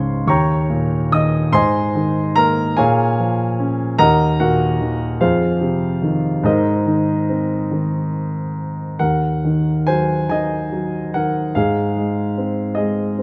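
A warm, up-front grand piano carries this reflective, melancholic fragment of lyrical classical solo music, moving with a rubato feel in 6/8 through shifting chord colors, including an Eb7 at the start and an Absus2 at 1.5 seconds, across a span from deep bass to bright upper register, before a new section begins at 9.0 seconds, all set in a light reverb.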